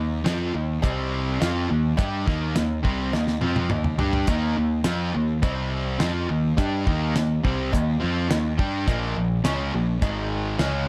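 An overdriven, double-tracked electric guitar sits up front with a swaggering classic rock riff from 0.0 s, alongside a fuzz-laden picked electric bass underneath. At 0.3 s a dry, dark 70s drum kit with a fat snare and tight kick comes in, playing a fill at 3.1 s, while a metallic cowbell rings distantly in the background. The confident, straight 4/4 groove sits in a moderate studio reverb and is cut from a longer piece.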